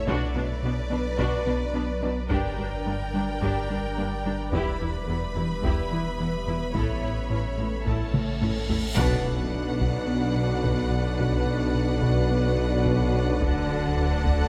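A moderate scoring-stage reverb surrounds this relentless, vast cinematic cue, a hybrid of orchestra and electronics in B minor at 108 BPM, where a lush symphonic violin line, a distant viola section, a background cello section and a calm, nasal organ-like drone with chorus sit over a deep sine sub bass, a dark analog bass riff and close, dry taiko hits with heavy sticks. A huge, dark cymbal swell and drum fill build from 8.1 s to an impact and band accent at 9.0 s, where a smooth studio violin section takes the melody on a held F#5. Very quiet mellow French horns, a soft-edged tuba and focused double basses join them at the same moment, with the chords moving from Bm to D at 13.4 s in this excerpt.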